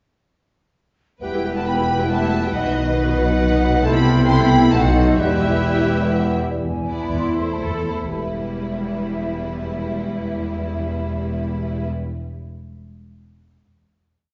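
Heard from further back in a recital hall with a wet, lingering reverb and a softened top end, this short, whole classical piece for symphony orchestra is stormy and restless, a fast romantic movement in E minor and 3/4 that moves with rubato between 111 and 139 BPM and slows from 4.5 to 8.1 seconds. A lush, vibrato-rich violin section carries the melody with syncopated and sustained chords, doubled in thirds by an airy, hollow flute section, while a second violin section adds a counter-melody, violas rock a two-note figure in the background, cellos hold a sustained bass with passing notes, and double basses double the bass line on the beats. Woodwinds and brass colour the harmony until about 6.4 seconds: a dark, very quiet clarinet and a roomy oboe play chords in the rhythm of the tune, a mellow bassoon answers at phrase ends, and a tight, close-miked French horn section doubles the tune at the octave, before a brief coda on E7 and Am/E settles onto a final E minor chord at 8.1 seconds.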